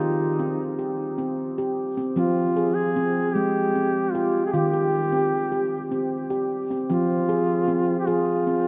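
Bathed in a long, wet cathedral reverb, this short excerpt of gentle, meditative world music unfolds in 6/8. An up-front handpan plays ringing arpeggios with sharp finger strokes, its stainless-steel tone warm yet vintage and band-limited, while a mellow, up-front duduk sings a folk-style solo melody alongside it, scooping into notes with vibrato and a smooth top, trailed by a diffuse ambient delay. The harmony rocks between Eb and Fm, arriving on Fm at 6.9 seconds.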